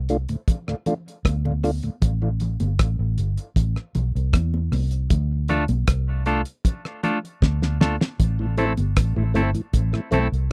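A dark, round fingered bass opens this hypnotic, meditative dub reggae passage. It is joined at once by a cloth-damped, thuddy drum kit with a fat snare, tight kick, rim clicks and hi-hat, and by a mellow tonewheel organ with key click, a slow rotary speaker and dub echo. The organ drops out after its opening phrase and returns near 8.4 seconds, while high-tuned, damped congas sit in the background under their own echo. Around 5.5 seconds a clean, twangy picked electric guitar enters, also sent through dub echo, as the chords move between D minor and A minor and a drum fill leads back to A minor. The dry, close 1970s-style studio sound keeps bass, drums, guitar and organ up front in this short cut from a longer piece.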